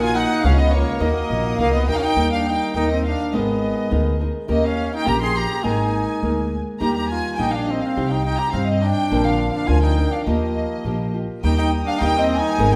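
The recording sits in a reverberant recital hall, the sound of a church or concert hall with a long tail around every note. This festive, proud mariachi passage in 2/4 is cut from a longer piece. An intimate, up-front violin section carries the melody, played sul tasto with light vibrato and a soft attack. Beneath it, a trumpet in classical style sings a second line, while a small-sounding nylon-string guitar fingerpicks the accompaniment, with an audible finger squeak. A woody, thumpy upright bass with gut strings anchors the low end in pizzicato, sitting prominently in the mix. A smooth symphonic violin section holds background chords in the opening 2.2 seconds and returns at 11.4 seconds as the harmony comes back to Eb.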